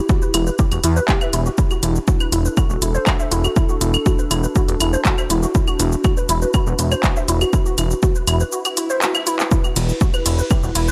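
Melodic techno at 121 BPM with a melancholic, cinematic mood, this short cut sets a woody, wave-folded pluck playing arpeggios over a fat, detuned analog bass and a warbling, nostalgic tape-like pad, all pumping to the sidechain through Emadd9 and D/E chords, while an overdriven, up-front kick and a techno kit of smooth hats, claves, handclaps, ride and shaker drive it until the kick drops out at 8.5 seconds for a very quiet swell and a drum fill before the return to Emadd9 at 9.5 seconds.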